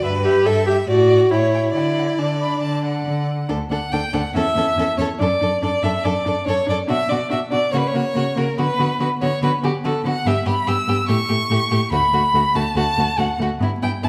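A clear, focused first violin carries the melody up front, its vibrato singing across a span from G4 to E6 in this graceful, cheerful string quartet movement from the classical period, cut from a longer piece. It moves at a quick 142 BPM in straight 4/4 and D major, with a close second violin tracing an inner line beneath it. A rich cello anchors the bass, also placed up front with a smooth top, while the viola fills in the accompaniment from 0.2 seconds, every part a single bowed player with vibrato. The harmony opens on Em/G and settles on D, then shifts toward Bm at 6.9 seconds before returning through A7 to D at 11.9 seconds. A wet recital hall reverb gives the quartet a sense of space, and a layer of vinyl crackle lends the sound an aged patina.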